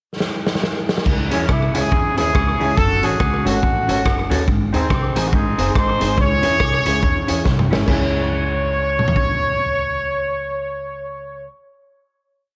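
Driving and mischievous, this short ska piece at 141 BPM in C# harmonic minor opens with a gritty, saturated garage drum kit playing a fill at 0.2 seconds with slapback echo and a side-stick ska beat, joined by a woody, growly upright bass walking from 1.1 seconds, a warm, roomy horn section spinning call-phrase motifs over C#m, F#m and G#, and a clean, hollow-body jazz guitar chopping the off-beats, before the drums drop out at 9.3 seconds and the rest hold a final chord under light studio reverb.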